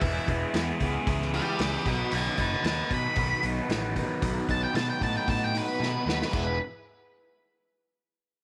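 Garage rock at 114 BPM in E major, rowdy and raw, cut from a longer piece, opens with a dark octave-fuzz lead guitar solo up front over a double-tracked crunchy overdriven guitar riff with phaser, fuzzed picked electric bass, a reedy combo organ holding sustained chords with light vibrato in the background, and a vintage drum kit with a punchy kick and pumping small-room sound, moving from E to B at 1.9 seconds before a drum fill at 5.8 seconds leads back to E at 6.3 seconds.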